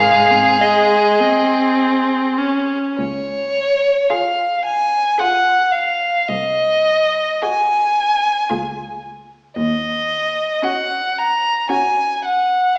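The pulse is a slow, elastic 3/4 at about 55 BPM, with uneven beats that stretch and give in a rubato feel. This serene movement for string quartet sits in D-flat major, a short passage cut from a longer romantic piece, with chords moving from Ab to Db and on toward Ebm7. The first violin carries the melody up front, its bowed tone full and focused with vibrato. Behind it, the second violin plays a smooth, even second line that sounds distant, while the viola gives a rich, close accompaniment up front. Underneath, the cello's dark, woody bass sings with vibrato until it stops at 10.4 seconds, and the melody lingers to 12.8 seconds. A wet recital-hall reverb places the quartet in a church or concert hall, though the overall sound has a small-speaker quality.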